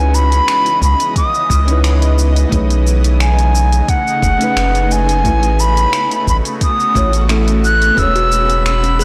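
A gently swung 4/4 groove of finger snaps, smooth hi-hat and shaker from a tape-softened R&B kit underpins this blissful, relaxed sunset chillout passage, cut from a longer piece, with a soft electronic kick joining at 0.8 seconds. Beneath it, a round, deep analog bass sits up front with tube saturation. A small, dark, fingerpicked nylon-string guitar and a shimmering, ethereal ambient pad with chorus, phaser and octave-up shimmer carry the harmony through C#m9, B13, A69 and E69. Over the top, a reedy silver concert flute plays the melody with a straight, airy tone and rolled-off highs, its tongued notes trailed by tape echo, which also colours the guitar. At 8.0 seconds a woody kalimba adds brief thumb-plucked arpeggios in the background, soon joined by a glassy texture of drifting overtones. The recording as a whole is blown-out and overdriven, set in light digital ambience.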